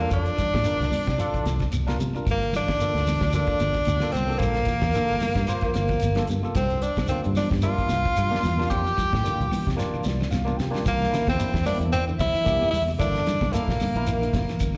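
A breathy, up-front tenor saxophone carries the melody with vibrato and slapback echo from the opening of this driving, intense afrobeat cut at 112 BPM, shadowed by a whispered, very quiet alto saxophone line, a barky, lightly overdriven tine electric piano, clean picked guitar arpeggios steeped in spring reverb and tape echo, a dark, round fingered bass, a dry 70s drum kit with fat snare and tight kick, very quiet woody claves, and background grainy shekere and high-tuned congas, the band heard as a live gig through the venue's PA, with drum and electric piano fills at 9.8 seconds leading into a new section at 10.8 seconds as the harmony moves from C9sus4 and Gm9 to C7.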